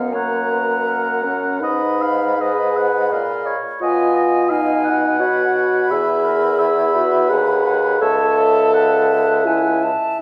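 In a loose, rubato 3/4 at 84 BPM, this yearning, elegiac slow romantic movement for wind quintet, cut from a longer piece, sets an airy, crisp-attacked silver concert flute on the melody above a distant oboe with light vibrato on the second line, while a warm French horn and a mellow clarinet in the background supply accompaniment and an up-front, vintage-toned bassoon with vibrato carries the bass, the ensemble heard in the wet reverb of a recital hall as the chords move from Ebm/Gb through Abm and Abm/Cb to E and A/C#.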